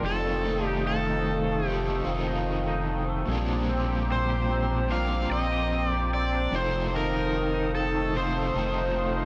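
A straight 4/4 pulse at 74 BPM carries this ethereal, dreamy dream pop excerpt, where a bright, up-front overdriven slide guitar sings the melody over a crunchy, double-tracked overdriven guitar with tremolo and subtle chorus, twangy, compressed electric guitar arpeggios drifting through analog chorus and delay, a warbling, nostalgic tape-like pad holding dark, lo-fi chords, and a round, deep analog bass anchoring the F7 to Bb69 and back to F7 progression, all captured in a dry, gritty recording with light digital ambience.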